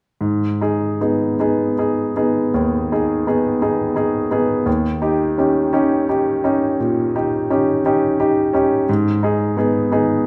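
Wistful and melancholic, this brief excerpt from a Romantic nocturne for solo piano unfolds in G# minor at a slow 49-59 BPM in 12/8, with a freely breathing rubato feel. The grand piano sounds smooth and vintage, sitting up front and spanning D#2 to G#4 as the harmony passes from G#m to D#7 at 4.7 s and back to G#m at 8.9 s. A moderate recital hall reverb gives the instrument a gentle sense of space.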